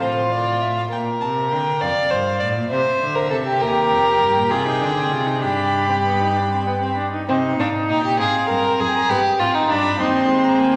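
Serious and solemn, this fragment of a baroque-style fugue for string quartet moves in a straight 6/8. One bowed violin carries the melody high above, with vibrato and an even, smooth line, while a second violin, played with light vibrato, sits up front with a second line and a polished top. A rich cello holds the bass with a steady vibrato, and a clear viola joins at 3.6 s, adding even, bowed accompaniment in the middle. The players sound in a wet concert hall whose long reverb gives the ensemble a warm, spacious glow. The harmony grows darker and more searching as the passage unfolds, and at 7.3 s a new section begins, continuing until the cut at 10.8 s.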